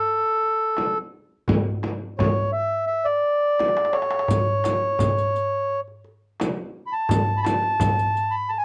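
Worn, warbling cassette-tape sound with light reverb colours this passionate, warm excerpt of an Arabic maqam ensemble in A maqam ajam at 85 BPM in straight 4/4, where a reedy, round accordion sits up front carrying the melody between A4 and B5 over a clay-shelled, band-limited darbuka played with hard hands and a deep, distant frame drum, with a drum fill at 3.6 s and a close, dry riq with dark jingles joining at 4.3 s.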